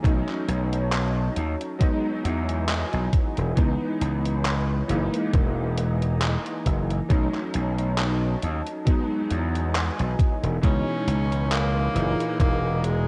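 Vaporwave at a slow 68 BPM with a light swing, this nostalgic, woozy fragment cut from a longer piece loops jazzy chords like B9, Emaj7, C#m7 and F#13 as a thumpy, overdriven electronic kick and a punchy, bright slap bass sit up front, a detuned 8-bit drum machine adds gritty handclaps and hi-hat with gated reverb, a clangy electric grand piano carries the accompaniment through chorus and analog delay, a mellow, warbling tape-like pad hovers in the background, and a breathy tenor saxophone with vibrato and scooped notes enters at 10.6 seconds through tape echo, all coloured by a cassette tape character and light reverb.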